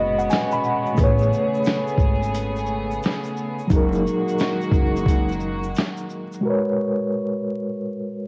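Melancholic and hazy, this lo-fi hip hop excerpt moves at 88 BPM in 4/4 with a 16th-note swing, opening on a fill from a reedy electric piano with fast tremolo, cassette tape colour and a low-pass filter, over pure, floating bowed strings and a woody pizzicato upright bass, all moving through G#m11, Amaj9 and F#69. A gritty, compressed sampler-style drum kit with a thumpy kick and fat snare sits up front from 0.3 seconds alongside a grainy tube shaker tucked in the background. The strings, drums and shaker stop at 6.4 seconds, leaving the electric piano to carry the return to G#m11 through light reverb, small-room ambience and vinyl crackle.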